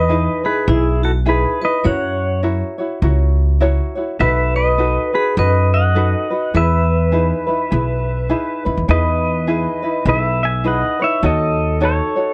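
Sunny and dreamy, this Hawaiian excerpt swings gently at 102 BPM in E major, with an up-front, clean electric pedal steel guitar carrying the melody through fingerpicked slides and volume swells, a bright, airy vibraphone struck with hard mallets ringing with fast motor vibrato in the background until 8.6 seconds, a light, fingerpicked tenor ukulele supplying the accompaniment, and a woody pizzicato upright bass sitting close and forward in a dry 1970s-style studio sound touched by light reverb.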